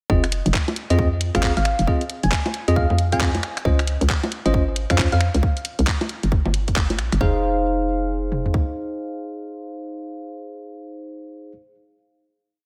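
Swung, skipping hi-hats, finger snaps, handclaps and high bongo ride over a tight four-on-the-floor kick with mid and floor toms in this short, late-night, soulful two-step UK garage piece, where a hollow, knocking FM bass with tube saturation bounces through a syncopated line, a bell-like tine electric piano fires clean, up-front chord stabs through chorus and delay over Fm7 and Dbmaj9, a round, thumb-piano-like synth pluck with phaser and cassette-tape colour adds short phrases from 1.6 to 5.3 seconds, and the electric piano rings on a final Fm7, outlasting the bass and drums until 11.5 seconds in light reverb.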